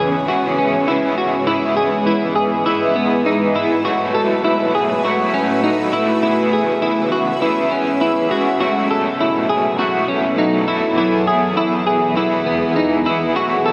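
A straight 4/4 dream pop excerpt with a floating, dreamy mood, where a clean, compressed electric guitar picks warm arpeggios up front beside a bright, overdriven garage guitar thick with tremolo, lush chorus and shimmer reverb, while a cloudy, evolving granular pad sustains blurred chords through E6, E, B7sus4 and C#m7, all bathed in a long plate reverb.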